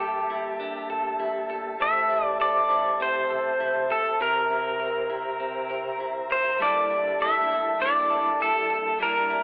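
Dream pop at 100 BPM in G dorian, hazy and haunting, cut from a longer piece and heard through a lo-fi cassette home recording with a telephone-like narrowness and moderate studio reverb. An up-front pedal steel guitar, played with fingerpicks and slide with volume swells and analog delay, carries the melody over a soft, flute-like tonewheel organ holding sustained chords with chorus vibrato and key click, while a clean picked electric guitar spins arpeggios through subtle chorus and delay and a round, dark analog bass sits deep in the background. At 6.6 s, as the chords return to Gm69 after moving through Am7 and C7, a second bright, twangy electric guitar joins with tremolo and ensemble chorus for the final seconds.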